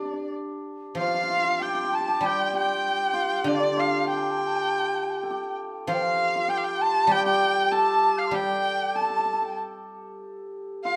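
A clear, focused erhu leads this graceful, wistful Chinese traditional chamber piece, its single bowed voice sitting up front with vibrato and portamento coloring the melody over a loose, rubato feel in 4/4. Beside it, a bright hammered dulcimer carries a second line from the start, its shimmering, ringing tone also placed close to the listener. Underneath, a guzheng played with fingerpicks supplies a silvery accompaniment that drops out at 10.2 seconds. At 1.0 second a mellow dizi joins with its own second line, an airy, hollow bamboo sound with a buzzing membrane, soft attack and vibrato, set distant in the background. A moderate recital hall reverb surrounds the ensemble in this passage taken from a longer piece.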